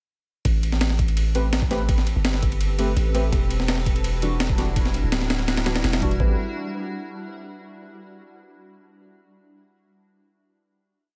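A heavily chopped, gritty breakbeat kit with a thumpy kick, a high-tuned snare and a small room ambience drives this short, atmospheric and raw drum and bass and jungle piece at 167 BPM in A dorian. It arrives at 0.5 seconds alongside a deep, sine-toned 808-style bass that plays long gliding notes up front. A blurred, evolving granular cloud pad with its own reverb holds chords with syncopated pushes from 1.2 seconds, while soft, dark chord stabs, detuned and ring-modulated with chorus and dub echo, punctuate the Am9 and Em9 harmony. The piece settles on a final Am9 chord at 6.2 seconds.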